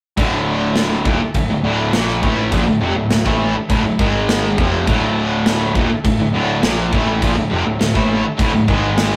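A rough rehearsal-room recording with tube saturation and a moderate stone room reverb gives this hard rock passage, cut from a longer piece, a rough sound. Three guitars play the riff from 0.2 s to 9.2 s, all sitting in the background: a cranked stack guitar with overdrive and harmonic tremolo, a scooped, compressed distorted electric guitar, and a double-tracked high-gain distorted guitar. Beneath them, a fuzz picked electric bass growls with overdrive, while a gated 80s drum kit stands up front with a punchy kick, a medium-tuned snare and bright cymbals ringing in a gated stone room. A mellow tonewheel organ holds very quiet, flute-like sustained chords with chorus vibrato, key click and a stopped rotary speaker. The harmony rests on Dm, moves to G#5 at 4.0 s and returns, keeping the straight 4/4 mood heavy and driving.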